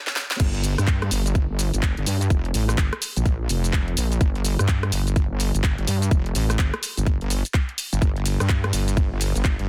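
A gritty, aggressive bass house excerpt in G minor at 126 BPM, tuned to A4 = 436 Hz, opens with a short drum fill from the garage kit at 0.1 seconds, its layered, produced sound built from a cracking snare, handclaps, rim click, hi-hat, shaker, ride and crash cymbals over a 16th-note swing of 62%. At 0.4 seconds the drop hits as a tight, up-front electronic kick with a high-pass filter arrives alongside a heavy wobble bass between F1 and G2, a detuned sawtooth-and-sine tone with a fast attack that is saturated and compressed, thickened with chorus and overdrive, thinned by a high-pass filter and pumping against the sidechain. The bass sits prominently in a dense, heavily limited modern master with a digital ambience, and the groove holds this single drop section until the clip ends.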